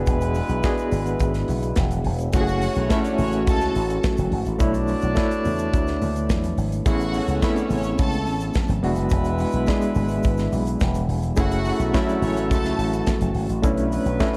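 A punchy slap bass with an envelope filter drives this glamorous disco piece alongside an up-front acoustic drum kit, while an overdriven reed electric piano with fast tremolo adds gritty accompaniment, a mellow French horn section holds soft sustained chords beneath pop-style horn stabs, very quiet low-tuned congas and a grainy tube shaker fill out the percussion, and a lush, clear string section enters at 2.3 seconds with a tape-echoed second line, set in a dark small-room production.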